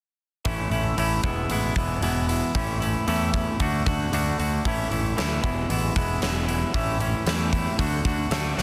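Set in a straight 4/4, this restless, anthemic fragment of quiet-loud alternative rock opens with a clean, twangy electric guitar playing compressed, scooped arpeggios at 0.4 seconds, carrying a subtle chorus and sitting up front. At 0.5 seconds a huge, acoustic arena drum kit joins with a punchy kick, medium-tuned snare and hi-hat, alongside a growling picked electric bass that is overdriven and bright. The harmony cycles through A, E and D under light reverb in a dense, heavily limited modern master.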